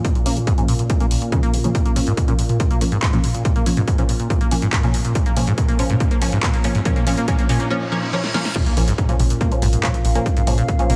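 Hypnotic and industrial, this excerpt of driving peak-time techno in Bb minor runs at 141 BPM on a single Bb minor chord, with an overdriven, up-front electronic kick, an overdriven techno kit of punchy snare, handclaps, hi-hat, toms and crash, a squelchy resonant acid bass riff and muted, detuned dub chord stabs carrying phaser and tape echo. Beneath them a deep, moody ambient pad drones on Bb2, while a warbling, lo-fi tape-like pad sits in the background, both under light digital ambience. Filter sweeps on the acid bass and stabs drive a build-up, a reverse cymbal and drum fill lead into the drop at 8.6 seconds with a very quiet impact, and a tight, nasal sequencer bass enters at 8.8 seconds.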